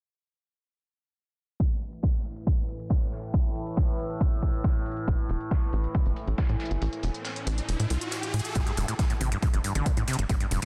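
Driving, dark peak-time techno at 138 BPM in a straight 4/4, carried by a punchy analog electronic kick that sits up front from 1.6 s, layered with smooth, overdriven electronic hats and a dark, fat-snared acoustic rock kit in the background. Beneath them a wave-folded drone of sawtooth, sine and triangle tones hums with moving overtones and a resonant, shifting notch, slow to bloom and long to fade, with chorus and its own reverb, as a filter sweep runs through the opening stretch over an A5 chord. A tight, punchy sequencer bass of sawtooth and square waves joins at 5.1 s with a plucked, decaying filter tone, pumping against the kick. A break arrives at 6.8 s while an electronic riser builds toward the turn at 8.6 s, where the harmony drops away and a squelchy, gritty acid bass takes over the riff, resonant and saturated, with its own filter sweep and dub echo. The industrial mood is sealed by a dense, heavily limited, fairly dry master, and the clip is cut from a longer piece.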